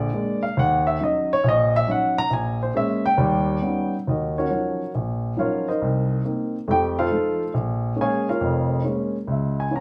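A solo baby grand piano opens this swinging, smoky jazz piece at 138 BPM in 4/4, with a swing feel on the eighth notes. Its tone is dark and mellow, with an intimate, natural character and the soft clatter of the instrument's action audible beneath the notes. The piano spans the range from F1 to A#5, and the tuning sits slightly low, with A4 at 438 Hz. The opening harmony moves through A#7, D#m7, A#m9b5 and D#aug7 before settling into E-flat minor at 4.1 s, where a new passage begins on Ebm9 and continues through Cm7, F7, Bbm7 and Dbm7. A wet studio reverb places the listener a little further back in the room, and this short cut from a longer piece ends at 9.8 s.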